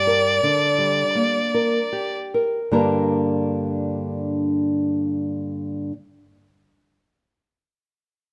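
This brief fragment of a romantic duo opens with a bowed violin and a nylon-string classical guitar sounding together, setting an elegiac, solemn mood in a slow, rubato 4/4 that slows down through its opening bars. The solo violin carries the melody, its tone rich and focused with vibrato and a smooth top, sitting up front until it falls silent at 2.2 seconds. The guitar provides the accompaniment, thumb-plucked across a span from G2 to Bb5, its small, warm body placed up front with an audible finger squeak. A new section begins at 2.8 seconds, and the guitar continues until 5.9 seconds. Close, detailed microphones and light reverb give the pair an intimate, present sound.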